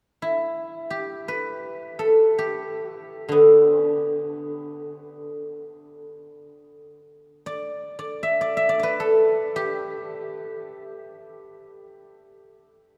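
This Chinese traditional recording is a short cut from a longer piece of solo plucked-string music, serene and pastoral in mood and unfolding in free time in the G gong mode. A single guzheng carries the whole performance, entering at 0.2 seconds and sounding until 11.9 seconds, moving between D3 and E5. Played with fingerpicks, its acoustic tone is warm, silvery and ringing, and it sits up front in the mix. The instrument is bathed in a wet, cathedral-like reverb with a 5.9-second decay, as if recorded in a church or concert hall, so each plucked note hangs in a spacious room. Tuned to A4 = 441 Hz, the passage stays within one section, evoking calm, open countryside.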